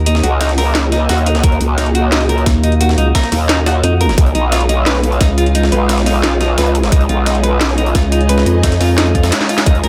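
A deep, moody pad of detuned sawtooth layers pumps under sidechain from the first moment, joined by a nasal, resonant vowel-sweep wobble bass that drops in and out and a very quiet, woody string section adding lush bowed texture. Clean, picked electric guitar arpeggios ring through spring reverb and delay, while a gritty, sampler-style breakbeat kit with a high-tuned snare plays alongside a layered drum and bass kit of cracking snare and metallic hats, and an aggressive, saturated growl bass takes hold at 0.2 seconds. A tight electronic kick sits up front from 1.4 seconds, a barely audible zap flickers at 4.0 seconds, and a drum fill closes this dark, mechanical slice of technical drum and bass, set in light digital ambience.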